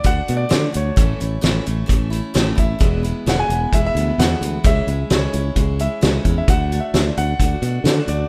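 This short cut from a longer folk rock and heartland rock piece opens with the full band at once: a loose indie drum kit, fingered electric bass, picked steel-string acoustic guitar and a bright concert grand piano. The mood is nostalgic and warm, in a straight 4/4 feel, with the chords moving from D to A, E and C#m before returning to D at 6.5 seconds. The drums sit prominently in the mix, with a fat snare, a punchy kick and a roomy, rolled-off top, while the bass sounds direct and up front. The jumbo acoustic guitar gives a full-bodied accompaniment across its range. Above it, the piano carries the melody in a high register with a brilliant, polished tone touched by tape echo. The small-room ambience and rough home-demo mix give the excerpt a casual, intimate character.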